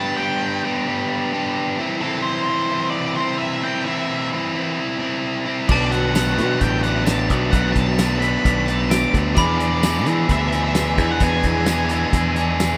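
Restless and moody, this rough home-demo excerpt of straight 4/4 indie rock at 131 BPM opens with a dark, fuzzed octave lead guitar carrying the melody through distortion and tape echo over a biting, up-front overdriven guitar riff; at 5.7 s a growly picked bass, a cloth-damped, thuddy drum kit with a fat snare and rolled-off top, a sparkling glockenspiel second line and a raw garage guitar riff with overdrive and ensemble chorus tucked in the background join in, a jingly tambourine arrives at 6.2 s, and the mix sits in studio reverb over chords moving from G and C/E to Bm7 and E7.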